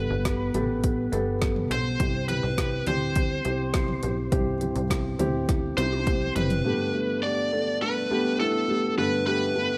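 An overdriven electric guitar, picked through a small cranked amp and sitting up front, carries the melody in this uplifting, piano-driven pop excerpt in G major at 103 BPM, moving from Gadd9 to C and back to Gadd9. Beneath it, a thick-felt upright piano plays mellow, intimate, vintage accompaniment, while a nasal, funky analog bass with a fast filter pluck is joined at 0.3 s by a layered deep house kit with a punchy kick, woody snare and dark hats. The drums play a fill from 5.5 s before bass and drums drop out at 6.6 s, leaving guitar and piano in light reverb.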